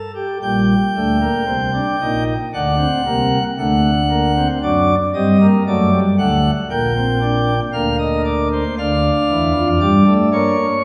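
Bathed in a wet scoring-stage reverb with a 1.9-second decay, this solemn, serious baroque-style three-part fugue in G minor, cut from a longer piece and tuned to A4 = 442 Hz, moves at a stately 57 BPM in 4/4 on a solo pipe organ whose light, bright flute stops sit up front in a sparkling, romantic voicing spanning Bb1 to G5, tracing Gm/Bb through D and D7/F# back to Gm/Bb before arriving on Dm.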